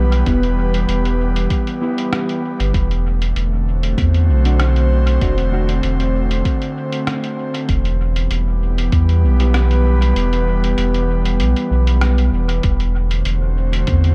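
A round, sine-toned sub bass sits up front in this meditative, deep ambient dub piece at 97 BPM in E minor, beneath a soft, breathy pad with chorus holding sustained chords that move between Em and D7/E, a dark, clean electric guitar adding chorused stabs with dub echo in the background until 9.6 seconds, a muffled, pitched-down sampler-style kit of hi-hat and rim click with dub echo, and a layered electronic kick that drops out from 10.2 to 12.6 seconds, set in a dry, dark production.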